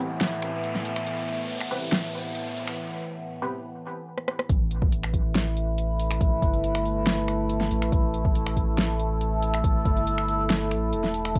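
This cut from a longer deep dubstep piece opens on a sawtooth drone with moving overtones, sustained on an Am7 chord through a slow attack, chorus and built-in reverb, alongside an electronic riser and a muted, detuned chord stab treated with phaser, subtle chorus and dub echo. At 140 BPM in a half-time feel, a deep house kit of finger snaps, hi-hat, rim click and a fat, overdriven snare sits up front from 0.2 seconds, colored by cassette tape. The riser gives way to a brief break at 2.8 seconds, the stabs fall away, and a short drum fill leads into the drop at 4.5 seconds. There the harmony settles on A5 as a round, soft sub bass with a triangle and square wave tone enters with a deep, overdriven electronic kick, both running to the end at 11.4 seconds. The mood is cavernous and dark, heard in a moderate booth ambience with the grain of a home cassette recording.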